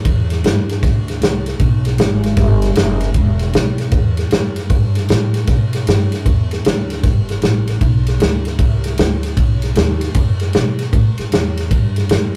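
A swung shuffle rolls along in four, giving this short electric blues cut from a longer piece a brooding, smoky mood. The upright bass carries the low end from the start, its pizzicato steel strings sounding woody and thumpy as it moves through its low register. Beside it, a natural country drum kit plays kick, ride cymbal and snare, with a punchy kick and a medium-tuned snare set up front in the mix. The kit drops out at 12.2 seconds, leaving the bass to carry on alone until the end at 12.4 seconds. The recording has the rough feel of a rehearsal room, with warm saturation and a modest booth ambience around the two players.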